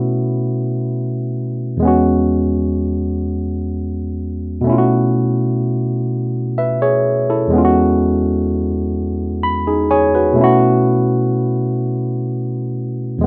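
Intimate and warm, this slow R&B excerpt in 6/8 at 42 BPM features a lone tine electric piano, bright and barky with light overdrive through a combo amp and placed up front, moving between B9sus4 and E6 across a span from E2 to B5, adding a fill from 8.9 to 10.4 seconds, all set in light reverb within a rough home-demo mix whose top end is dulled.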